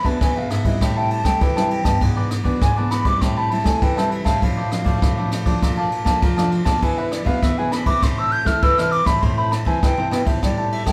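Samba and choro in A minor at 100 BPM, this bittersweet, yearning excerpt features an airy, distant jazz flute soloing with vibrato and tongued phrasing from B4 up to G6, moving through a progression that leans on E7 and Am7 before touching Dm7/A and Bbmaj7 and settling on Am. Beneath it a crisp, picked cavaquinho and two fingerpicked nylon-string guitars, one playing chords and one carrying a full-bodied, deep classical bass line, fill out the accompaniment. A brush drum kit sits up front with dark cymbals, a boomy kick and rim clicks, all heard as a band playing live together in a large studio with moderate reverb.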